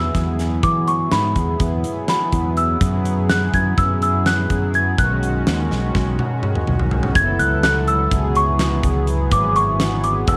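Lightly reverberant and brooding, this intricate progressive instrumental excerpt moves in a straight 9/8 at 249 BPM in eighths, over chords that run from E through F#9sus4 and B before turning to F#m, C#m and E13/G# at 7.2 seconds. A delicate, bell-like small celesta carries the melody above a shimmering, retro pulse-width pad with a soft attack and chorus, while a fingered electric bass sits direct and warm underneath. The huge, up-front arena drum kit hits with a punchy kick and fat snare, playing a drum fill from 5.7 seconds into the new section.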